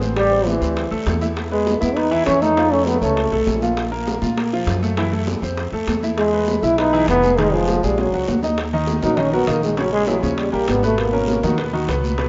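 Sophisticated and fiery, this Afro-Cuban jazz passage at 200 BPM puts a breathy, mellow trombone with light vibrato up front, taking a solo from 8.6 s, over a smooth vintage grand piano, a woody, thumpy pizzicato upright bass on gut strings, distant high-tuned congas, tight saturated bongos and a raspy guiro, set in a lush hall reverb with the rough, dull-topped sound of a home demo.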